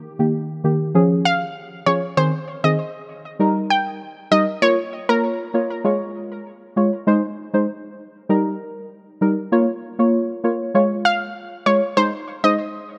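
An analog pluck carries the melody up front, round and warbling with a vintage bright edge, thickened by chorus and tape echo, sounding from 1.3 to 5.2 s and again from 11.1 s. Beneath it, a deep, mellow chord stab plays throughout, soft and dark with chorus, cycling through Eb, Db, Ab and Bbm in Ab major. This sunny, bouncy dancehall cut moves at 98 BPM in a straight 4/4, with light reverb and a dark production.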